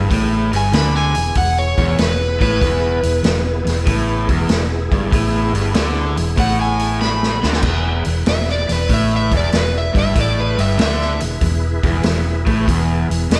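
A loping swing on the eighth notes drives this raunchy, gritty slice of blues rock and southern rock in a power-trio vein, cut from a longer piece. A crunchy, double-tracked electric guitar plays a low picked riff up front, anchored by a dark, round, foam-muted fingered bass, while a vintage acoustic drum kit with a punchy kick and a rolled-off top sits close in the mix. From 0.6 seconds an overdriven slide guitar, played with fingerpicks and carried on a slapback echo, takes the melody high above the band. Behind them, a thick, percussive tonewheel organ holds sustained chords in the background through chorus vibrato and a fast rotary speaker. The same section plays twice, with a drum fill from 7.0 to 7.6 seconds leading into the second pass, and a lush hall reverb gives the recording a big arena sound.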